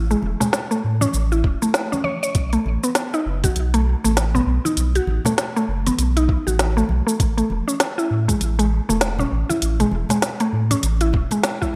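A gently swung sixteenth-note groove at 99 BPM in 4/4 drives this peaceful, organic downtempo piece, cut from a longer work. An electronic drum kit sits up front with a woody snare, smooth hi-hats and cabasa, colored by overdrive, studio reverb and gated reverb, while congas in a small room sit softly in the background. A soft, overdriven electronic kick joins at 1.4 seconds, and a deep, round sine sub bass with a fast attack and sidechain pumping holds the low end. Over this, a woody, full-bodied, mallet-like FM pluck plays short-decaying arpeggios through chorus and digital delay, shaped by a filter sweep throughout. The harmony moves from Amaj7 to B7 and back to Amaj7 at 7.2 seconds. A lush hall reverb and bright 1980s-style digital production give the whole a warm, polished glow.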